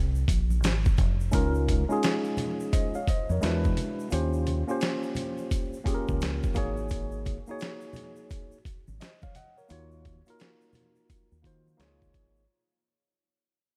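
A round, dark fingered electric bass opens this smooth, cool jazz-hop excerpt, cut from a longer hip hop piece at 86 BPM in 4/4 with a 64% swing on the sixteenths. Gritty, compressed, pitched-down sampler-style boom bap drums join almost at once, with a thumpy kick, a medium-tuned snare and hi-hat, while a tube shaker and congas sit distant in the background of a large room. After this opening break, a worn tine electric piano enters at 1.3 seconds, slightly out of tune and heard through its built-in speakers, sitting up front with the bass and drums. In Db major, tuned to A4 = 444 Hz, the harmony moves from Fm through lush chords such as Db69, E9, Eb13, Ab9sus4 and Ebm7 before settling back on Db69 at 11.8 seconds. Light reverb and a layer of vinyl crackle add a dusty sheen, and the whole passage plays under a fade-out that runs to its end at 12.5 seconds.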